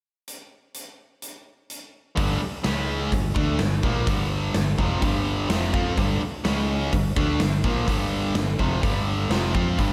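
Heavy and driving, this hard rock clip cut from a longer piece opens with a big acoustic drum kit alone at 0.3 s, its punchy kick, medium-tuned snare and hi-hat sitting up front in a natural, roomy sound. At 2.2 s a bright overdriven electric guitar and a sludgy, warm distorted guitar, both picked and carrying slapback echo, enter with the riff alongside a dark, round fingered electric bass. The riff moves through G5, C#5 and Gm, and a lush hall reverb gives the whole mix a big arena feel.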